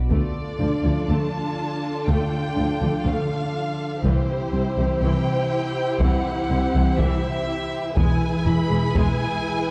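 This brooding, relentless cue from a hybrid orchestral and electronic film score opens at 0.1 seconds with bowed strings, a harp-like synth pluck and solo taiko drums all sounding together at a straight 122 BPM in 4/4. Two violin sections carry the melody and a second line beneath it, lush and vibrato-rich with a smooth top, while a distant, expressive viola section fills in the accompaniment. Low in the background, a dark, woody cello section and a double bass section hold the bass, and the mellow, ringing synth pluck spins arpeggios through chorus and digital delay with a long, decaying release. The taiko, struck with hard sticks and heard close and dry, drops out after the first second and returns at 4.0 seconds, as the harmony moves from D minor to C and then to E at 8.0 seconds. A moderate scoring-stage reverb and a dark, warm production wrap the whole ensemble, and the passage is cut from a longer piece, breaking off at 9.7 seconds.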